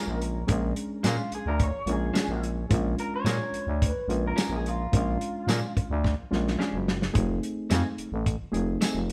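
A growling, thick FM bass sits up front in this gritty, soulful straight-eighth soul blues at 108 BPM, beside a dry, muffled soul drum kit of tight kick, snare, hi-hat and tambourine, while a bright, twangy, slightly broken-up guitar through a small old amp carries the tape-echoed melody until 6.0 seconds, a reedy electric piano and compressed, direct-recorded clean guitar stabs fill out the accompaniment, and a drum fill at 6.0 seconds leads the harmony from Bb7#9 to F7#9 at 7.1 seconds in this short live-room excerpt with moderate studio reverb.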